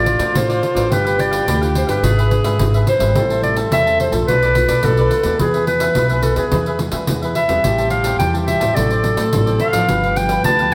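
A soft-attacked clarinet leads this festive, playful samba-choro fragment in A minor at 107 BPM, singing the melody up front in a classical style that still sounds distant and roomy. Beneath it, a breathy tenor saxophone carries a mellow second line in a jazz manner, whispered and intimate, with vibrato and scooped notes. The cavaquinho's crisp picking and the full-bodied, fingerpicked nylon-string guitar, its finger squeak audible from the background, fill in the harmony as it moves from Dm7/A through G7, E7/G# and Am7 toward a long E chord. A dark, woody upright bass plucks low underneath, and a jingly, compressed and saturated pandeiro joins at 0.1 seconds. A moderate large-studio reverb gives the acoustic ensemble a sense of space until the cut at 10.7 seconds.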